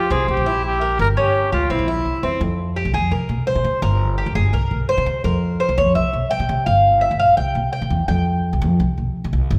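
Latin music in the Cuban son and guajira tradition, this danceable, warm-hearted piece moves at a brisk 169 BPM in a straight 4/4, set in F harmonic minor and cut from a longer performance. A breathy, whispered trumpet opens with a soft-attacked, close-miked melody full of vibrato, intimate and pop-styled, before falling away at 2.2 seconds. The Cuban tres plays picked arpeggios on its metallic double strings, some doubled at the octave, then takes a solo from 2.4 seconds until it stops at 8.6 seconds. Underneath, a woody, thumpy upright bass on gut strings gives a dark pizzicato foundation through to the end. The harmony circles between C7 and Gdim chords before settling on suspended and open F and Bb colors, with a brief Gm7b5 passing through. All three instruments sit up front, wrapped in the lingering reverb of a church or concert hall.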